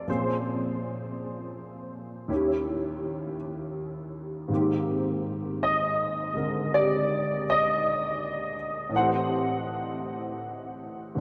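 A solo concert grand piano opens this tender, intimate jazz ballad fragment, sitting up front at a slow 54 BPM in 4/4 with a swung eighth-note feel, its deep bass and audible action noise giving it a close, natural presence across a range from Eb2 to Gb5. The harmony moves from Bbm9 through Eb7b9 to Abmaj9, then shifts to Am7 at 8.9 seconds. An ensemble chorus on the piano and a long cathedral reverb soak the mix in a dreamy haze.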